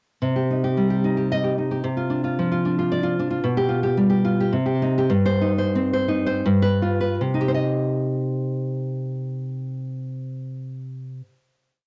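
A home cassette recording with a dulled top end and light small-room reverb carries this brief, complete romantic piece for solo nylon-string classical guitar, passionate and melancholic in a rubato triple metre. The full-bodied, up-front guitar is fingerpicked in rippling figuration through a short passage of minor harmony that moves toward the dominant, slowing from 2.7 seconds. At 7.2 seconds it settles on a final minor chord that rings until about 11.5 seconds.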